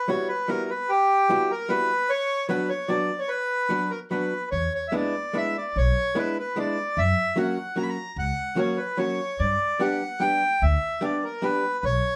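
Bittersweet and nostalgic, this fragment of a musette waltz moves in 3/4 at 148 BPM with a rubato feel, its reedy, airy accordion carrying the melody up front over a clean, picked, hollow-body electric archtop guitar whose dark, compressed accompaniment sits close by. A woody, growly pizzicato upright bass with steel strings enters at 4.5 s to anchor the low end as the harmony passes from Emadd9 through Bm, E7 and F# to G. The trio plays live together in one room, framed by moderate studio reverb.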